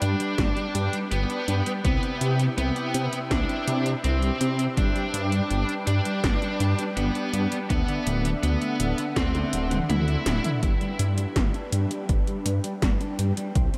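Romantic and nostalgic, this synthwave excerpt in G major moves at a straight 82 BPM in 4/4, with a distorted, bluesy lead guitar singing an up-front melody until 10.5 seconds over smooth supersaw chords that pump under lush chorus, a dark, very quiet semi-hollow guitar riff, a thick, saturated detuned saw bass, a punchy electronic kick, and 80s pad drums with metallic hats and a gated snare, with a drum fill at 9.2 seconds before filter sweeps on the supersaw and clean guitar at 10.6 seconds, all inside a dreamy mix drenched in huge ambient reverb.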